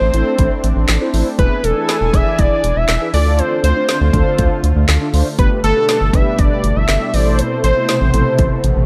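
Driving and melancholic, this synth-pop excerpt moves at 120 BPM in A minor through Am, E, Dm, Gadd9 and Amadd9, over a deep house drum kit (deep kick, woody snare, dark hats and handclaps) set up front beside a rubbery, bouncy square bass. A fat, detuned sawtooth lead with a sub octave and vibrato carries the melody through analog delay. Meanwhile, a lush, slow-attack unison pad and mellow, brassy synth brass, each treated with chorus, fill in sustained chords and accompaniment under light reverb.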